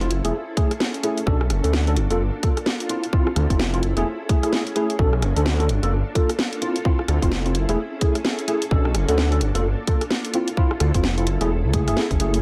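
Moody and late-night, this two-step UK garage fragment is cut from a longer piece, riding a swung groove in which a garage kit of cracking snare, bright hats and rim clicks sits up front in a small room alongside a tight electronic kick that enters at 0.6 s. A dark, detuned saw bass rumbles deep with a beating edge and sidechain pumping, while a worn, slightly out-of-tune tine electric piano plays chorused stabs trailed by dub echo. Beneath them, a silky, warbling string machine holds soft pumping chords through a cycle of minor ninth harmonies.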